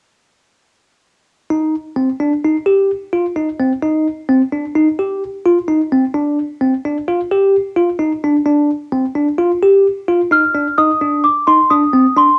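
In a straight 5/4, this tense, intricate fragment of progressive instrumental music opens at 1.5 seconds with a bright, clean tine electric piano playing direct, up-front arpeggios through a phaser over a Cmadd9, before a delicate, sweet celesta with a cassette-tape colour enters at 10.3 seconds with a bell-like melody high above, just before the harmony turns to a rootless Adim, the whole captured as a home cassette recording in a wet small room.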